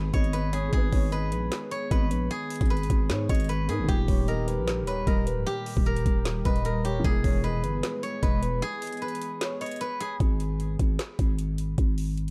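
Dark, brooding trap-style hip hop at 152 BPM in a half-time feel and G# harmonic minor, where a silvery fingerpicked steel-string zither carries the melody through low-pass filtering and delay over a knocking, woody trap kit with metallic hats, a growling, buzzy 808-style bass, a soft felt-muted upright piano with audible action noise, a glassy, warbling FM pad with ensemble chorus, and a breathy flute-like synth lead with tremolo, moving through G#m, D# and E before a break at 8.6 seconds and a closing filter sweep on the zither from 10.2 seconds over the drums and bass in this dry, dark excerpt from a longer piece.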